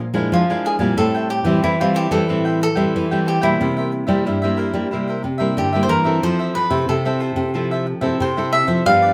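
A crisp, picked cavaquinho carries the melody up front in this lively, festive samba at 91 BPM, while a second, bright cavaquinho picks out accompaniment beneath it. Two fingerpicked nylon-string guitars fill out the sound: one plays deep, classical accompaniment with audible finger squeak, and the other holds down a full-bodied bass line on fresh strings. Moderate studio reverb surrounds the short cut from a longer piece as the harmony moves from Bb7#11 through Am7 and C7 to Fmaj7.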